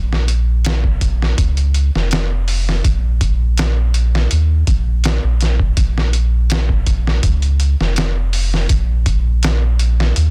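A soft dub sub bass sits up front from the very start, deep and round with a mellow, sustained tone, carrying this hypnotic, melancholic trip hop excerpt. Beside it, a sampler-style drum kit of hi-hat, thumpy kick and medium-tuned snare enters at 0.1 seconds, sounding pitched down, gritty and tape-warm. The short fragment is cut from a longer piece, set in digital ambience with a dense, heavily limited modern master.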